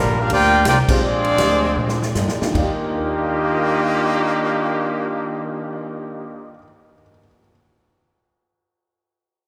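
Heard in a moderate concert hall, this short cut from a longer big band swing piece has an energetic, brassy feel, slowing down over its first 2.6 seconds as a band accent lands at 0.8 seconds and a drum fill follows. Up front, a warm trumpet section with vibrato carries the melody over a bright trombone section's second line, while a woody pizzicato upright bass and a natural, big-room drum kit with punchy kick, medium-tuned snare, crash, ride, hi-hat and cymbal swell drive the swing. Very quiet in the mix, a boxy picked acoustic guitar with finger squeak and a dark, mellow baby grand piano, entering at 0.9 seconds with audible action noise, fill in the accompaniment as the chords move from Gm7 to Bb13 and arrive at Ebmaj9.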